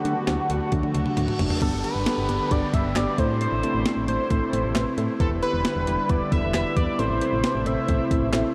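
Synth-pop at 134 BPM in G major, bright and wistful, this short cut from a longer piece sets a bold, up-front octave-doubled sawtooth lead with phaser, delay and vibrato over a warbling, lo-fi detuned pluck, a shimmering pulse-width pad in the background and a punchy, round FM bass, while an overdriven, thumpy 12-bit drum machine fills from 0.7 to 1.6 seconds as a reverse cymbal rises into the G chord, all soaked in a huge, dreamy reverb.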